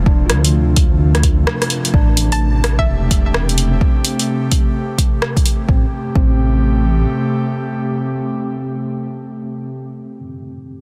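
A dense, heavily limited mix with light digital reverb carries this wistful, melancholic future garage excerpt in A minor at 128 BPM with a swung 16th feel, where a worn, slightly out-of-tune tine electric piano with 12-bit sampler grit and delay, an airy, breathy chorused pad and a dark, rumbling detuned saw bass all pump under an overdriven up-front kick and a deep house kit of hi-hat and rim click, while a hollow, nasal square pluck appears briefly at 2.3 seconds after a break and band accent at 1.5 seconds, as the chords move from F to Am7.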